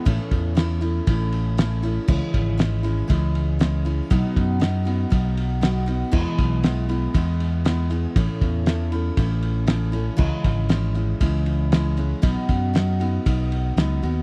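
A picked dreadnought acoustic guitar with audible finger squeak opens this open-road folk rock and heartland rock excerpt, joined at 0.1 seconds by a growly, amped fingered electric bass and a cloth-damped, thuddy drum kit whose fat snare, tight kick and dark, muffled crash and ride cymbals sound gritty and lo-fi, all three up front in a dry, close 1970s-style studio recording as the chords move through A, C#m, B and E.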